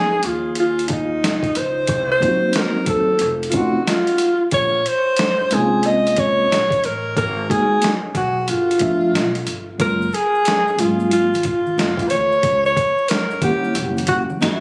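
This is a jazz-hop excerpt in 4/4, with a swung sixteenth-note feel and a mood that is at once warm and cool. Up front, a breathy alto saxophone carries the melody in a close-miked jazz style, played with subtone and vibrato and trailed by an analog delay. A mellow tine electric piano, clean and heard through its built-in speakers, accompanies it through chords such as Dbadd9, Bbm9 and Gbmaj9. Underneath, a woody, dark upright bass with gut strings is plucked pizzicato, while a gritty, pitched-down boom bap sampler-style kit adds a thumpy kick, a medium-tuned snare and hi-hat, compressed and re-recorded in a large room. At 9.8 seconds, very quiet maracas and congas enter, bright and close with hard hands. Light reverb and small room ambience surround the whole take, which was recorded on a phone in the room.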